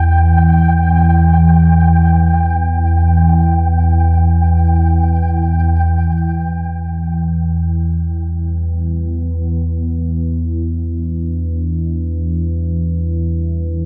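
Ominous and desolate, this dark ambient drone fragment rests on a deep, rumbling drone that sits up front through a phaser and its own reverb while a filter sweep moves across it, joined at first by a grainy, flickering high texture that gives way at 6.1 seconds to a bright, detuned, resonant pad fading in under chorus, all bathed in a cavernous cathedral reverb and the murky, warbling pitch drift of worn old cassette tape.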